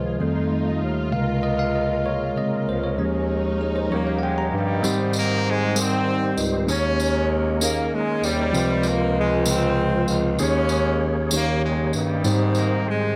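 The recording has a dark, warm production with light reverb and small-room ambience, framing a slow, jubilant and reverent gospel passage in Ab major at 65 BPM in a straight 6/8, cut from a longer piece. A bright, bell-like tine electric piano sits up front with the accompaniment and takes a solo over the first 4.8 seconds. Behind it, an overdriven tonewheel organ holds gritty, full chords through a slow rotary speaker and chorus vibrato, adding a brief fill near the start. A lush, woody bowed string section sustains chords through that opening stretch, while a punchy bass clarinet with a roomy, classical character carries the bass line. From 3.9 seconds a present, jazz-style horn section takes the melody up front, and a jingly, distant tambourine joins for the second section, over harmony that moves through suspended and dominant seventh chords, passing through Dbmaj7 before landing on Abmaj7.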